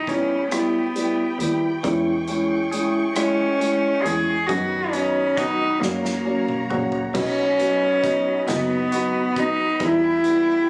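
A soft, floating cello sings the melody up front, bowed sul tasto, in this swaying, romantic six-eight pop ballad in B major at 45 BPM, over a lush, dark string section holding chords in the background, a distant bowed double bass with vibrato, a woody, boxy upright piano with audible action noise, a loose indie drum kit with a punchy kick and a fill from 5.8 to 7.1 seconds, and twangy, clean electric guitar arpeggios entering at 1.8 seconds, all captured by a phone in the room with studio reverb and compression.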